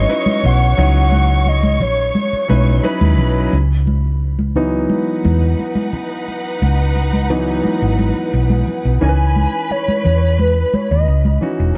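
Silky and cinematic, this lush 1970s-style soul fragment sets a hollow, woody square-wave lead with chorus over a bowed, vibrato-rich violin section, intimate grand piano that takes a solo from 3.5 to 9.0 seconds as the lead falls away before returning at 9.0 seconds, soft-handed damped congas, and a round, up-front hollow-body fingered electric bass, all within a dark production bathed in light reverb.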